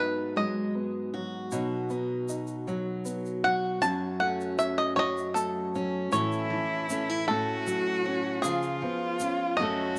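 Bathed in a moderate plate reverb, this intimate, wistful acoustic folk excerpt in a straight 6/8 opens with a twangy, fingerpicked bluegrass banjo carrying the melody up front over bright fingerpicked steel-string guitar, woody, boxy upright piano arpeggios and a grainy tube shaker from 1.5 seconds, until a rich, bowed cello with expressive vibrato and portamento joins with a second line at 6.1 seconds.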